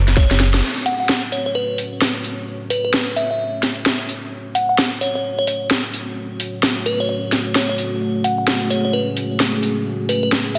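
A metallic FM bass note opens this bouncy, swaggering bass house excerpt in F# minor at 130 BPM, its dark, fast-decaying tone pushed up front with tube saturation and sidechain pumping before it stops at 0.6 seconds. Underneath, a garage drum kit with a cracking, overdriven snare, hi-hat and crash cymbal drives the swung 16th-note groove. It starts with a fill and a band accent, and an acoustic brush kit plays briefly in the background until 0.5 seconds. A crystalline synth bell carries the melody in a bright register, its vintage FM tone warbling through chorus, tremolo and delay. From 0.8 seconds a moody, full-bodied analog pad of detuned sawtooth and sub-octave layers swells in with slow-attack sustained chords, gritty with 12-bit sampler texture, pumping to the sidechain and moving under a continuous filter sweep. The whole mix sits in a lush hall reverb and comes across dense and heavily limited.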